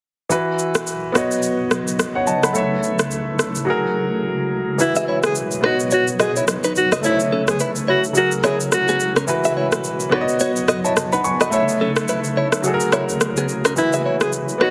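Breezy and romantic, this afrobeats excerpt opens with an intimate grand piano, its audible action noise and long sustain up front, over a swung, electronic shaker and rim click, while a blurred, detuned granular pad drifts in behind them. After a silent gap that ends at 4.8 seconds, a breathy alto saxophone with vibrato and tape echo takes the melody, and a bright, picked clean electric guitar riff with spring reverb joins at 5.0 seconds. The mix carries a heavily compressed, radio-like sound with plate reverb and small room ambience.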